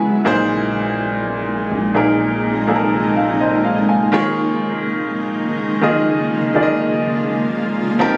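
A grand piano fill opens this short cut from a longer contemporary R&B piece, heard at once alongside a granular cloud pad that holds sustained chords. The piano sits up front with a natural, warm baby grand tone, while the pad is blurred and evolving, its detuned unison voices giving a bright, cloudy shimmer through its own built-in reverb. At 0.3 seconds a deep, sine-like 808-style bass enters low in the background, its mellow notes sounding with a fast attack and long decay. The slow, straight 4/4 groove moves from Bb9sus4 to Eb9sus4 at 4.1 seconds, setting a moody, sensual atmosphere. Captured on a phone in the room and then treated with compression and a lush hall reverb, the recording has a spacious sheen.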